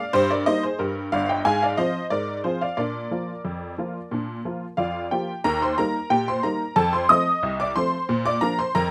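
In a straight 2/4 at 91 BPM, this cheerful, lively ragtime fragment in Eb major, cut from a longer piece, features a solo honky-tonk upright piano, detuned and jangly, set up front with light reverb and spanning G1 to Eb6, moving through Eb/G, Fm/Ab and Bb before a new section at 5.4 seconds turns to Eb, F7 and Bb.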